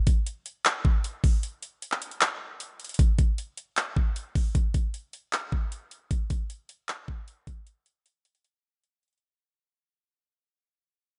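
Set in a rough home-demo mix with digital ambience and a muffled top end, this short cut from a longer hard-hitting, melancholic hip hop track moves at 154 BPM in a half-time 4/4 feel, carried by an up-front electronic trap kit of knocking kick, metallic hi-hats and handclaps that drops into a break at 1.4 seconds before fading out from 3.0 seconds.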